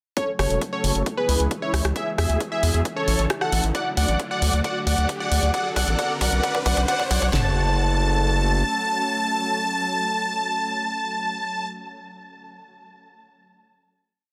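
Driving and euphoric, this short uplifting trance piece in F# minor at 134 BPM builds for 7.3 seconds, as a huge, airy supersaw lead carries a repeating riff in thirds and sixths through a filter sweep and tape echo, doubled in unison by a mellow plucky lead in the background, over a silky analog string pad, a gritty galloping driven synth bass, overdriven house drums with a punchy four-on-the-floor kick, cracking snare, bright hats and a fill from 3.8 seconds, plus a background riser, before the leads, pad and bass resolve onto a final F# minor chord.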